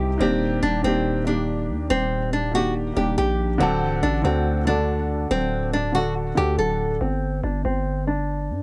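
Menacing and dark, this half-time trap hip hop fragment pairs an up-front, fingerpicked nylon-string guitar melody, low-pass filtered, with audible finger squeak, against a worn, mellow grand piano whose action noise sits close in the light reverb, while a growling, buzzy 808-style bass with a fast attack and decaying tail drives beneath the Ebmaj7 and D chords until the piano drops out at 7.0 seconds and the guitar and bass land on G5.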